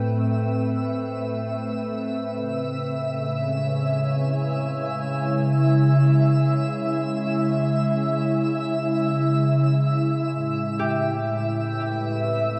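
Ambient in free time, reflective and melancholic, built on a glassy, warbling FM pad that sits up front with slow-attack sustained chords moving from Am7 to C#m and back to Am7 at 10.3 seconds, thickened by ensemble chorus. Alongside it a faint twinkling granular texture adds an octave-up shimmer through lush chorus, and at 10.8 seconds a mellow concert harp enters softly with ringing fingerpicked arpeggios through analog delay. The dreamy mix is soaked in a huge reverb with a long tail and carries a cassette-tape character, and the passage is cut from a longer piece.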